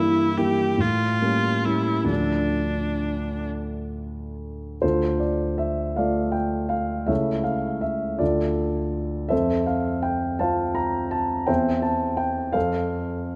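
In a rubato 6/8 lilt of roughly 43-57 BPM counted in dotted quarters, this melancholic, elegiac romantic classical passage in D minor, cut from a longer piece, pairs a solo viola with a grand piano. The viola sings its rich, smooth melody with even vibrato, bowed close and up front, but only until 3.5 s, after which the dark, mellow piano carries on alone through a new section starting at 4.8 s, its long sustain lingering in the moderate reverb of a scoring stage. The harmony moves from tense diminished and A7b9 colours into D minor, then drifts toward F major by 13.4 s.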